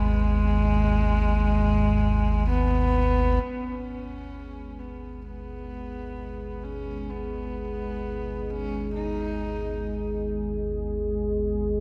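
Drenched in a dreamy plate reverb, this dark ambient drone, cut from a longer piece, feels unsettling and dark from its first moment. A deep, rumbling synth drone holds the low end throughout, its detuned, wave-folded tone carrying its own built-in reverb and an analog chorus. A horsehead fiddle carries the melody up front from the start, its nasal, husky, earthy bowing marked by light vibrato and portamento and trailed by an analog delay. At 3.4 seconds a moody analog pad arrives with sustained chords, its detuned sawtooth body thickened by a sub octave and chorus. The drone, pad and fiddle all fade in from that point, and the fiddle stops at 10.3 seconds while the drone and pad sustain to 11.8 seconds.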